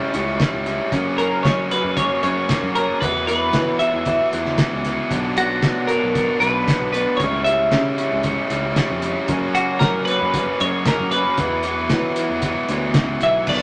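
Indie rock in a straight 4/4 at 115 BPM, this short excerpt, cut from a longer piece, carries a cool, bittersweet mood over a cycle of C#dim, F#, Esus2 and Bm. A bright, clean twelve-string electric guitar carries the melody up front, its compressed, twangy picking spanning F#4 to E5. Beneath it, a biting overdriven guitar and a second guitar through a small old amp, slightly broken-up and lo-fi, share the riff in the same register. A picked electric bass, dark, direct and round, anchors the low end, while a cloth-damped drum kit sits up front with a thuddy, muffled character, fat snare, tight kick, dark cymbals and a gritty, saturated, rolled-off top. A moderate large studio reverb adds space.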